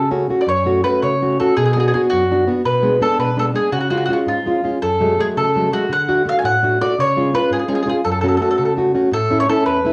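A picked, woody mandolin with doubled strings sings a passionate, wistful Italian serenade melody in a lilting 6/8 from the first moment, over a fingerpicked classical nylon-string guitar with fresh, warm strings, both close and up front, softened by cassette tape and a plate-reverb sheen in a small, homey room, as the chords move through a minor progression to end on an A at 9.1 seconds in this fragment of a longer piece.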